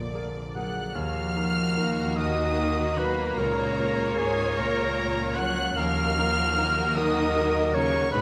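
Bathed in a moderate scoring-stage reverb, this longing, moving cinematic film-score excerpt in Eb minor drifts in a rubato 6/8 at 50 BPM, with a lush, distant violin section singing the high melody over a background second violin line, a pure flute, and a solo oboe entering at 0.5 seconds, while expressive violas with portamento, smooth cellos, focused double basses, mellow French horn chords, a deep-bassed grand piano, and a very quiet, ringing harp playing warm arpeggios fill out the accompaniment.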